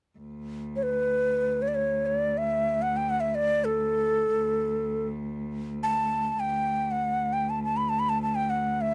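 A breathy, end-blown ney carries the melody up front from 0.8 seconds, its reed-cane tone expressive and close-miked, with tongued notes and vibrato. Beneath it, a single bowed cello holds a rich, smooth drone on a low D from 0.2 seconds, even and with its own vibrato. This festive yet passionate Turkish piece in makam rast on D unfolds in free time, cut from a longer work and captured in a dry, close 1970s-style studio sound with light reverb.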